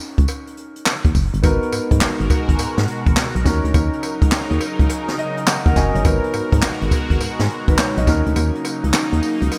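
A dark, mellow baby grand piano opens this bouncy, slick new jack swing excerpt at 104 BPM in G# minor with swung sixteenths, adding a fill at 4.9 seconds. An up-front jazz brush kit with a high-tuned snare, boomy kick, handclaps, hi-hat and tambourine comes in just after to drive it, alongside a punchy, round FM bass, a very quiet, dry cowbell, and a swirling, nasal phased pad entering at 1.4 seconds over D#m7 and G#m9 chords. It is all set in a bright 1980s-style digital production with light small-room reverb, until the kick drops out at 8.4 seconds.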